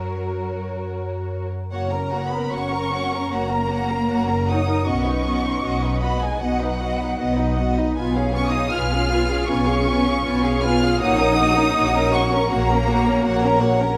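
A classical slow romantic movement for string orchestra, this short excerpt in F# major unfolds at 77 BPM in 4/4 with a flexible, rubato feel and uneven beats, its mood warm and lyrical. The violins carry an expressive, lush melody reaching up to E#6, while a second violin line, smooth and close, moves beneath it. The violas fill in the accompaniment with an even, vibrato-laden tone, and the cellos sound focused and somewhat distant on the bass line. The double basses sit up front, grounding the ensemble with a rich, smooth low register down to F#1. The harmony moves from F# to B, then through C#7/B before settling on F#/A# around 11.0 seconds, all wrapped in a dark production and the wet reverb of a recital hall.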